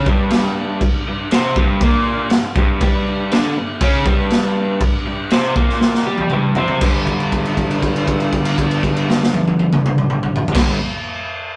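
Swaggering and raw, this short garage rock excerpt in a straight 4/4 is cut from a longer piece and carries the rough, live feel of a rehearsal room. A crunchy, overdriven electric guitar, picked and double-tracked, sits up front playing a riff that opens on a G5 chord and ranges from G2 to G4. A raw acoustic drum kit enters almost at once, built from punchy kick, medium-tuned snare, toms and dark crash cymbal, with a saturated, gritty tone, a rolled-off top and a pumping small-room character. At 5.8 seconds the drums break into a fill that leads into a new section at 6.8 seconds, where a held note rings out until 10.5 seconds. A moderate stone room reverb wraps both parts, giving the whole take a close, unpolished sound.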